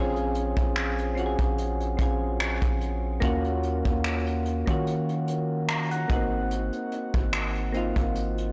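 Blown-out and overdriven, with a light studio reverb, this short cut from a longer contemporary R&B piece has a moody, longing air and a gently swung sixteenth-note feel. Soft, round electric-piano-like synth keys carry the accompaniment from the start, their gentle chorused tone sitting up front and moving through Bbm9, Ebm7 and Ab7. A long, deep 808-style bass sustains beneath them with a mellow, sine-like tone that decays after each note. A vintage brush drum kit enters at 0.2 seconds, sounding roomy with a punchy kick, finger snaps and hi-hat, its top end rolled off and its snare touched by soft clipping. The keys add a fill between 5.3 and 6.5 seconds before the passage closes at 8.5 seconds.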